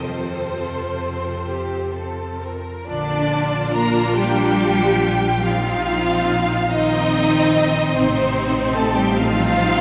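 Serene and warm, this slow romantic movement for string orchestra unfolds in 6/8 at 40-50 BPM in dotted quarters, with a rubato feel in Bb major. A lush, up-front violin section carries the expressive melody while a second violin section adds a soft-attacked line with portamento. The violas fill in with smooth, even accompaniment, and a focused cello section joins the clear double basses on the bass, every part bowed with vibrato. Cut from a longer piece, the harmony moves from F to Bb at 2.9 seconds, then through Cm7/Bb and F7/A, with the ensemble set in a church reverb that decays over 2.9 seconds.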